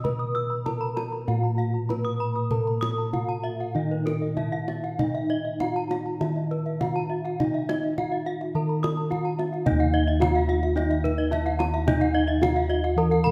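Balinese gamelan in Eb pelog, this brilliant, ceremonial passage moves at roughly 97-109 BPM in a straight 4/4, cut from a longer piece. A bronze metallophone carries the melody in the middle register, its wooden-mallet strokes ringing with the shimmering beats of paired tuning and sitting forward in the mix. Above it, a second metallophone spins arpeggios, close-miked, dry and full, joined at 0.3 seconds by a third whose horn mallet gives a brighter edge. Bossed gongs anchor the bass up front with a round, beating tone, while the kendang adds tight, hard-handed strokes that sound as if set in a small room. The ensemble sits in a moderate recital-hall reverb, and the music shifts into a new section at 9.7 seconds.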